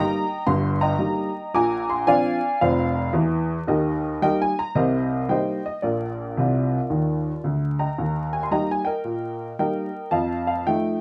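A worn, woody upright piano plays solo stride jazz from the opening note, swinging and playful at 112 BPM in Eb major, its slightly detuned tone sitting up front with long sustain and ranging from deep bass to high treble. A piano fill at 6.4 seconds leads into a new section at 8.0 seconds before this cut from a longer piece ends at 11.0 seconds. Vinyl crackle and a moderate studio ambience surround the playing, with the instrument tuned to A4 = 436 Hz.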